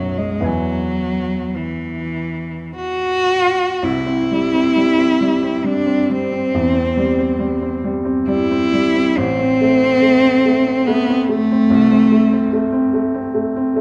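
Warm and serene, this short romantic classical passage for cello and grand piano is cut from a longer piece and moves in a flexible, rubato three-four time at roughly 47-74 BPM. A single bowed cello carries the melody from E3 to F#4, its tone rich and focused with vibrato, and it stays up front until 12.9 s. The baby grand piano supplies the accompaniment across a range from A1 to G#5, sounding clear and open with a short sustain, and it rings on alone until 13.8 s. The music begins in E major and shifts to C major at 3.8 s, where a new section opens, and the harmony moves from C through C/E to A minor and Am/C. A moderate scoring-stage reverb and a dark, warm production frame the pair.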